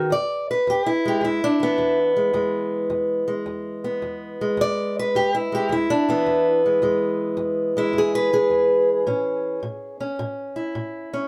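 A fingerpicked steel-string acoustic guitar opens this short acoustic country blues excerpt, playing alone at 107 BPM in 4/4 with a swing on the eighth notes. The mood is swaggering and gritty, set in E mixolydian. The parlour-style guitar has a boxy, up-front tone, and its range stretches from E2 to D5. The harmony rests on E for most of the passage before moving to A at 9.1 seconds. Close, detailed microphones and a light reverb keep the sound intimate and present.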